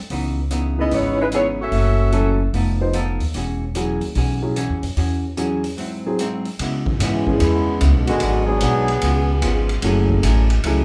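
A clean hollow-body archtop guitar, a woody pizzicato upright bass and a distant, roomy drum kit with a punchy kick set up a joyful, swinging big-band groove. At 0.8 seconds a mellow saxophone section states a brief, smooth-topped melody with light vibrato, while a dark, vintage grand piano with audible action noise comps beneath and carries on to the end. After a break at 5.8 seconds, a trombone section takes a vibrato-laden solo line, all in a live-room sound with moderate studio reverb.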